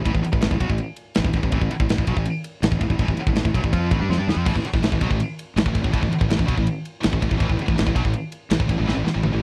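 A growly, punchy fuzz bass sits up front from the start, driving this relentless, aggressive heavy metal excerpt at 164 BPM with a bright, double-tracked high-gain guitar riff over a tight kit of kick, snare, toms, ride and crash. A second distorted guitar joins in the background at 4.5 seconds, just after a drum fill, and another fill closes the clip. The sound is dry and close, like a 1970s studio recording, with the mid-forward drums carrying a big-room character.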